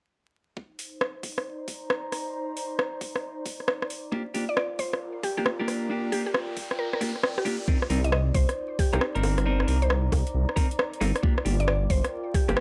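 A dry, gritty recording with vinyl crackle and light reverb carries this late-night, bouncy two-step UK garage passage, where a knocking, overdriven kick and a garage kit of bongos, metallic hats and rim clicks ride a swung groove under a breathy, sidechain-pumped pad. Twangy clean electric guitar stabs arrive at 4.1 seconds, a woody, round mallet-like synth pluck melody follows at 4.5 seconds, a riser builds from 5.1 seconds, and a deep, rumbling detuned saw bass enters at 7.9 seconds.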